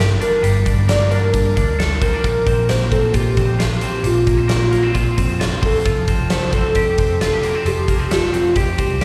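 This youthful, breezy slice of jangly indie pop, cut from a longer piece, opens with everything at once: a warbly, nostalgic lead carries the melody in a full-bodied, detuned tone with chorus, tremolo, plate reverb and slapback echo, over a bright, twangy twelve-string electric guitar playing clean arpeggios through spring reverb and slapback. Underneath, a vintage muted picked electric bass sits dark and round, while a big rock drum kit stands up front with a fat snare, punchy kick and hi-hat. The harmony moves from Gmadd9 to Bbsus2 and on to Fadd9 at 5.9 seconds, all heard as a live gig through the venue's PA with the light reverb of a recital hall.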